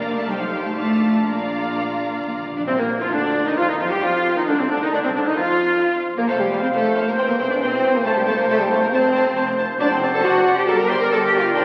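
A quick, restless classical-period movement for symphony orchestra, stormy in mood and pushed along with a rubato feel, heard as a brief cut from a longer piece through the crackle of a very old 78 rpm record and a wet concert hall reverb. Bowed string sections play throughout: a lush, distant violin section carries the melody with vibrato, soft attacks and expressive portamento, a second, clear and even violin section adds a higher line, and a very quiet viola section fills in the accompaniment. Beneath them, a close, focused cello section and a clear double bass section form the bass, while a mellow French horn section holds sustained chords in the background of the blend. Soft-mallet timpani with a round tone play a fill from 0.8 to 2.7 seconds. At 2.7 seconds the woodwinds join, a hollow, airy flute, a close-miked oboe and a very quiet clarinet adding second lines while a punchy, roomy bassoon supports the accompaniment, as the harmony moves toward D7/F# and settles on G minor.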